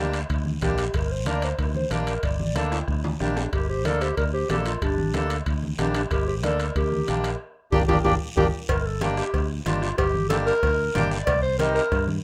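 A cumbia opens at once with a soft, round sine lead carrying the melody, treated with chorus and phaser and a touch of vibrato, over a reedy, dark accordion and an up-front, direct fingered electric bass. Almost immediately the percussion settles in: a distant bombo played with a soft beater, a raspy guiro, ringing timbales and cowbell in the background, and bright, low-tuned congas with a vintage, band-limited tone. Drum fills and a band accent push the groove forward in a driving, danceable way, and at 3.2 seconds a breathy clarinet joins as a second line, played in a jazz style with light vibrato. The sine lead drops out at 8.5 seconds, and from 8.7 seconds the clarinet takes a solo, with a short accordion fill and a move from G minor to C minor near the close. The sound has moderate studio reverb and the rough feel of a home demo mix, and the clip is cut from a longer piece.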